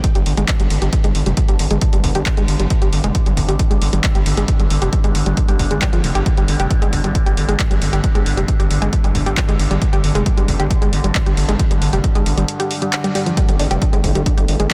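A punchy, layered electronic kick drum drives this intense, industrial stretch of peak-time techno, cut from a longer piece, and it drops out briefly between 12.5 and 13.4 seconds. Beneath it, a gritty, distorted synth bass built from square, sawtooth and sine tones with oscillator sync growls in a low register, its resonant filter pluck and sidechain pumping giving it an aggressive, evolving edge. An analog pluck carries the riff, bright and detuned with a sub octave, chorus, overdrive and delay, and its filter sweep adds movement. An analog drum machine, re-recorded in a large room, adds handclaps and hi-hat. Far in the background, a detuned drone with a slow attack and long release spreads moving overtones through chorus and its own reverb, pumping against the kick, all set in light reverb.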